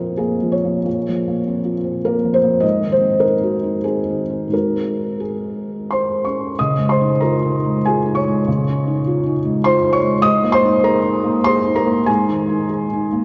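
A long, washing cathedral reverb surrounds this recording, its top end rolled off to leave a dark, hushed sound in a church-like hall. A felt-muted upright piano plays alone and up close, soft and intimate, ranging from Ab2 to Eb6 in a peaceful, tender neoclassical minimalist passage in Ab major. In a rubato 3/4 between 86 and 103 BPM, the same phrase is heard twice across this short extract from a longer piece, moving through Bbmadd9 and Ab7 before Dbadd9 arrives at 6.6 seconds and Absus2 at 10.2 seconds.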